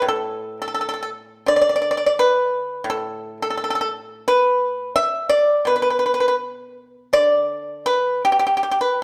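Set in a dark production with a moderate recital-hall reverb, this 9-second fragment of a longer Chinese traditional piece features a solo acoustic pipa, played up front with fingerpicks and touched by a slapback echo, its bright, dry and percussive tone unfolding in a flowing, serene rubato.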